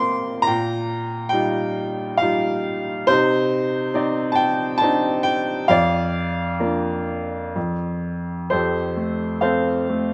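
Peaceful and calm, this brief classical passage, cut from a longer piece, features a lone upright piano playing lyrically in a gently flowing triple metre with free, rubato timing. The instrument sounds clear and woody, with a vintage character and long sustain, sitting up front under close, detailed microphones and a light touch of reverb. Colourful chords drift through the opening, the harmony gives way to a chordless moment at 7.6 seconds, and a new section begins at 8.5 seconds before the cut at 10.1 seconds.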